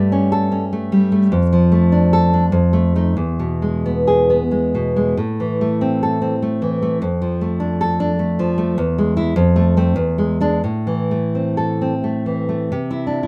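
Romantic solo classical guitar in A minor and 3/4, moving at a rubato 83-104 BPM with a passionate, intimate mood, cut from a longer piece. A dark, full-bodied nylon-string guitar sits up front, fingerpicked across a range from E2 to A4, with audible finger squeak and a deep classical tone set in light reverb. The harmony travels from A7/G through Dm/F, F7 and E to Am at 5.2 s, then through Dm/F, E, F and E7 before returning to Am around 10.6 s and turning to C at 12.7 s.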